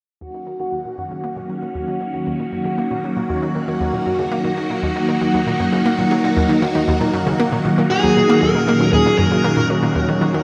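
Ambient, sequencer-driven space music in Eb minor at 117 BPM, this hypnotic, expansive passage is cut from a longer piece and rests on an Ebm7 chord in a straight 4/4. A swirling, vintage string machine holds sustained chords up front, its bright tone shaped by ensemble chorus and phaser, fading in alongside the synth arpeggio sound from 0.2 to 8.4 seconds. Beneath it, a round, detuned analog pluck with a fast attack and short decay plays a riff through chorus and delay, while a mellow, pulsing gated texture built from triangle waves sits higher up, tempo-synced and softened by chorus and its own reverb. At 7.9 seconds a smooth, overdriven electric lead guitar enters with a picked melody carried on delay, staying close in range until 9.7 seconds. The whole mix is steeped in an echo-heavy chamber reverb, giving the layers a spacious, drifting sheen.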